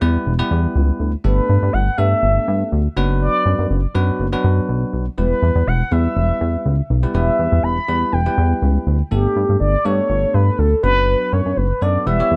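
A straight 4/4 pulse at 122 BPM drives this confident dance-pop excerpt in E dorian, tuned to A4 = 444 Hz and cycling through Em, Gadd9 and Bm/F#. A glossy, retro chorused synth bass built from pulse-width-modulated pulse and sawtooth tones, with a fast, plucky filtered attack, anchors the low end up front. A bright, clean, direct bell-like tine electric piano sits lower in the mix in accompaniment, and from 1.2 seconds a round, horn-like synth lead carries the melody with a soft attack, vibrato, a filter sweep, chorus and phaser, the whole mix resting in light reverb.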